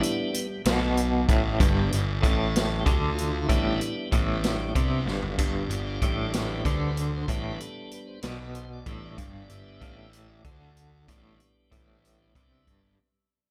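A piping, scooped tonewheel organ solos through a slow rotary speaker with light overdrive over a hypnotic, hazy psychedelic rock groove in 6/8 at 63 BPM in G mixolydian, alongside a clean, twangy electric guitar riff with tremolo, an up-front vintage drum kit with a punchy kick and rolled-off top that plays a fill at 5.1 seconds, and a fuzzy picked electric bass entering at 0.7 seconds, all under light reverb as this cut from a longer piece fades out throughout.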